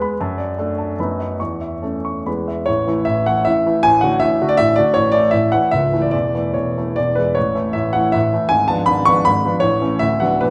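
Graceful and proud, this classical piece is a romantic triple-time dance in A major for solo grand piano, shaped by dotted rhythms and a flexible rubato that lets the tempo drift between 133 and 171 BPM in 3/4. The piano covers a broad span from C#1 up to C#6 and sits up front, with a clear, intimate and natural tone in which the audible action noise of the instrument comes through. A short opening phrase moves from D/F# through B7/F# and A/E to arrive on E, and a second, longer phrase begins at 2.7 seconds on A. That second phrase passes through D/A, A/C# and E before a G#dim7 at 8.5 seconds adds a moment of tension that resolves back to A and then turns toward Bm/D. A wet recital-hall reverb with a 1.8-second decay surrounds the playing, and the music is cut from a longer piece, breaking off at 10.5 seconds.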